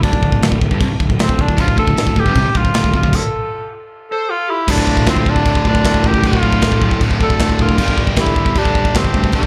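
Straight 4/4 drums with a tight kick, medium-tuned snare, china and crash cymbals sit up front in this dark, relentless heavy metal excerpt, heard through a club PA, where a mellow cor anglais with light vibrato carries a classical-style melody through slapback echo and digital delay over very quiet crunchy double-tracked and bright compressed distorted guitar riffs and a growly, punchy fuzz bass, joined by a high-gain guitar riff at 1.6 seconds and a smooth, dark overdriven lead guitar line at 4.1 seconds, with a stop at 3.1 seconds.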